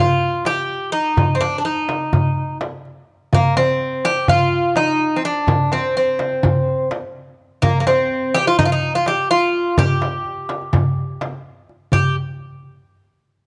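In a straight 9/8 at 251 BPM counted in eighths, this stately, warm Turkish makam ensemble in G makam ussak, cut from a longer piece, sets a mellow, metallic Greek bouzouki up front, its picked double strings with some octave doubling carrying the melody, joined at 0.2 s by a crisp, deep metal-shell darbuka played with hard hands and at 0.5 s by a small, bright frame drum heard in a small room, the ensemble caught by close, detailed microphones in a moderate stage reverb before a new section arrives at 11.9 s.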